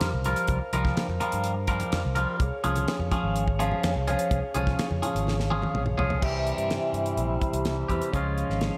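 A twangy electric guitar riff with phaser opens alongside a dry, fat-snared 70s drum kit, growly fingered bass and a flute-like tonewheel organ holding sustained chords through a slow rotary speaker, while very quiet low-tuned congas sit underneath until 6.2 seconds in this trippy, mysterious psychedelic rock cut at 126 BPM in C phrygian dominant, which moves from C7sus4 to Db before a drum fill at 5.3 seconds leads into a new section on C, the mix steeped in a dreamy plate-reverb haze.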